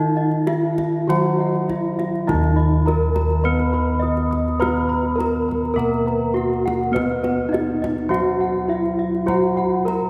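Hypnotic and shimmering, this Javanese gamelan passage in a straight 4/4 is cut from a longer piece and moves from a brief opening section into a longer second one at 2.3 seconds. Bronze metallophones fill most of the texture: one carries the melody, another plays an accompaniment beneath it, and a third spins high arpeggios. Two of them are struck with wooden mallets and have paired tuning that produces shimmering beats, one of these dark and smooth. The third, played with a horn mallet, sits boxy and up front. Bossed gongs add round, beating bronze tones, one set tracing airy high arpeggios while the other anchors the bass from the background, and a tight kendang taps along quietly from a small-sounding room. A wet cathedral reverb with a 4.8-second decay wraps the ensemble in a long, ringing glow.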